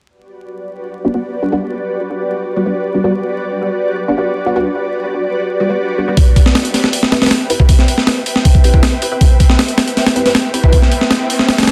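A filtered dub chord stab opens this frenetic, raw drum and bass cut with a jungle edge at 1.0 seconds, its muted, nasal sawtooth tone detuned and plucked by the filter, with a fast attack, short decay and a moving notch. A filter sweep runs across the stab the whole way, while phaser, analog chorus and dub echo give it a deep, mellow haze over a Gmaj7 chord. At 6.2 seconds, as the harmony moves to Cmaj7, a breakbeat sampler-style drum kit enters up front at 158 BPM in a straight 4/4. The kit is gritty and compressed, with a thumpy kick, a high-tuned snare and hi-hat set in small room ambience. An electronic riser creeps in at 10.2 seconds in the background. Light reverb and digital ambience sit over a dense, heavily limited modern master dusted with vinyl crackle.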